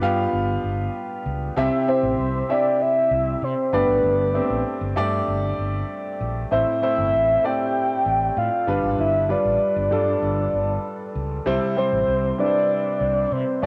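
A straight 4/4 pulse at 97 BPM carries this dramatic, nostalgic slice of 1980s-style pop, cut from a longer piece and tuned slightly sharp to A4 = 441 Hz. A baby grand piano with a long sustain sits up front as accompaniment from the start, its warm, open tone softened by cassette tape, while a fretless electric bass runs beneath it throughout with a bright, growly, amped edge. At 1.9 seconds a soft octave-layered synth lead enters with the melody, the loudest part: a full-bodied, round blend of triangle and sine with a sub octave, fast attack and sustained notes, dark in colour and treated with chorus, phaser, vibrato and cassette tape. The harmony moves from G7 to C, through Gsus2 and Am, then returns to G7 and C. A moderate spring reverb and the hazy character of a home cassette recording give the whole passage an intimate, dated glow.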